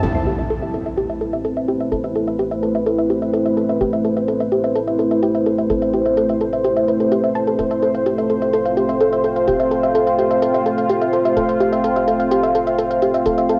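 This recording has a homemade cassette character, with a short, wet studio ambience around it. It is a driving, cinematic stretch of melodic techno in A minor at 127 BPM in a straight 4/4, cut from a longer piece. A deep, moody pad sits up front, holding sustained chords that move from Amadd9 to F at 7.6 seconds. Its detuned, wave-folded tone is thickened with chorus and reverb and carries a sub octave beneath. A soft, round pluck plays arpeggios through chorus and tape echo while a filter sweeps across it, and a tight, punchy sequencer bass pulses darkly in the background. Smooth, overdriven electronic hi-hats keep time in a small room, and an electronic impact marks the opening, ending by 1.9 seconds.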